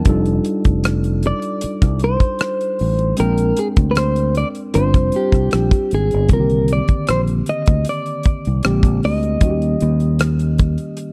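R&B with a neo-soul lean, this late-night, smooth excerpt moves at 77 BPM in C minor with a light sixteenth-note swing, passing through chords such as F13, Bb13 and Cm9. A damped 70s drum kit of hi-hat, kick and rim click sits up front with a tight kick and rolled-off top, alongside a round, punchy fingered electric bass, while a worn, slightly out-of-tune tine electric piano plays accompaniment through a combo amp. From 1.3 seconds a clean, picked electric guitar carries the melody with compression and slapback echo, in a dry, close 1970s-style studio sound.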